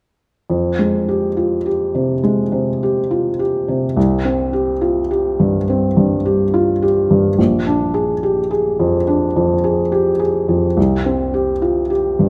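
Classical in feel, this short excerpt from a longer piece carries a longing, melancholic mood at a rubato pace of about 70 BPM in 4/4, tuned slightly low to A4 = 439 Hz. A felt-muted upright piano is the sole part, playing an accompaniment role from 0.5 s to 12.3 s across a range from Bb1 to Ab4. Its tone is soft, mellow and intimate, sitting up front in the mix. The harmony moves from Fmadd9 to C5, then to Bb7 at 7.4 s before returning to C5. A moderate recital hall reverb surrounds the instrument, giving the close, muted sound a gentle sense of space.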